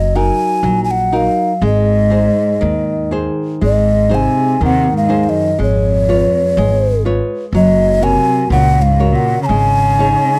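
A breathy, hollow alto ocarina carries the melody up front in this passionate, longing fado-style ballad, its clay tone colored by vibrato and tongued notes. The pace is slow at 61 BPM in 2/4, with a rubato feel and tuning set to A4 = 442 Hz. A fingerpicked nylon-string guitar also sits up front with a deep classical sound, while a pizzicato upright bass on steel strings gives a woody, growly low end until 10.1 s. From 1.6 s a single bowed cello adds an expressive second line with a soft attack, vibrato and portamento. The harmony moves from Ebm/Gb through Ab, Db7/Ab and Gb to an Absus4, all captured in a dry, close studio sound in the manner of the 1970s.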